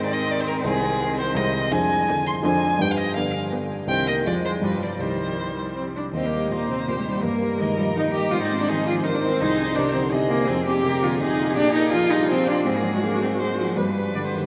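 Heard through the long, wet wash of a vast cathedral, this excerpt from a quick classical-period movement for piano quartet in triple time carries an urgent, dramatic mood, its pulse pulled and stretched with rubato. A solo violin sings the melody with vibrato and portamento, its rich, expressive tone set at a distance in the echoing space. Beneath it a single cello carries a focused second line from up front, bowed with vibrato, while a viola, likewise sliding and vibrant, fills in the accompaniment from further back. The grand piano sits close and polished, its warm accompaniment ranging down into the low bass. The harmony turns from a minor-key opening toward a major-key passage at 6.1 seconds, and all four players sound together through to the close near 14.5 seconds.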